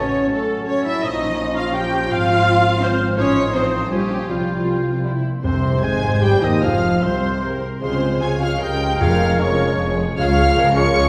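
Set back in a wet scoring-stage reverb, this stormy, dramatic excerpt from a fast romantic orchestral movement in F minor and 3/4, at 150-168 BPM, has a lush, vibrato-laden violin section carrying the melody over a focused second violin line, a clear oboe, an airy flute and a shadowy clarinet, while smooth, even violas, a vintage-toned bassoon and dusky French horns fill the harmony, a mellow, ringing harp plays arpeggios, and expressive cellos with portamento join full-bodied double basses on the bass, until at 5.4 s soft-attack trombones, tight trumpet stabs and round soft-mallet timpani hits add weight.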